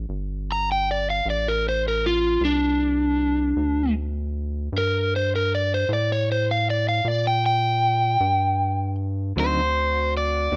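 An overdriven electric guitar leads this soulful, smoky slow blues in 12/8. It sounds bright and compressed, picked up front with plate reverb from 0.5 seconds. Beneath it, a rubbery square-wave bass with a hollow, bouncy pluck holds the low end from the very start, dark and sustained. At 9.4 seconds the harmony moves from Gmadd9 to D7b9. Here a clean electric guitar joins with fingered, tremolo-treated accompaniment, and a mellow saxophone section adds tight, vibrato-tinged sustained chords in the background. The rough home demo mix carries light reverb, and this short piece is cut from a longer performance.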